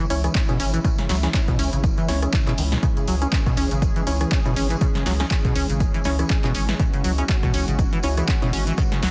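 A dense, heavily limited mix with little reverb opens this driving, raw acid house excerpt, which sits on a single C# minor chord throughout its nine seconds with a swung sixteenth-note feel. Up front, a punchy, tape-warm electronic kick joins at 0.3 s beneath an analog drum machine whose handclaps, hi-hat and snare carry a short room alongside a rim click, while a jingly, bright tambourine sits close but in the background. The low end pairs a thick, sine-based sub bass, saturated and pumping against the sidechain, with a rubbery, resonant sawtooth acid bass riff whose filter pluck decays into lush chorus and tape echo. Above them, a smooth, detuned sawtooth pad holds sustained chords with a soft attack, chorus and its own sidechain pumping. Tucked behind, a hollow, organ-like stab mixes sine, triangle and a noise layer, roughened by vintage 12-bit sampler grit and trailed by tape echo.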